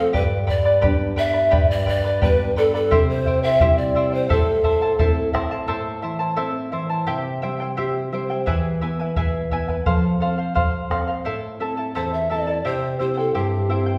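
Festive yet melancholic, this Andean folk excerpt in 2/4 opens with a hollow, distant pan flute carrying the melody over a breathy, expressive second pan flute in the background, both bamboo-toned with vibrato and a crisp chiff on each attack. Up front, a shimmering fingerpicked charango with double strings and a dark, full-bodied thumb-plucked nylon-string guitar accompany throughout, the guitar adding a fill at 7.1 seconds, while a round bombo sounds in two stretches and the lead flute returns at 12.0 seconds. The ensemble rings in a reverberant hall.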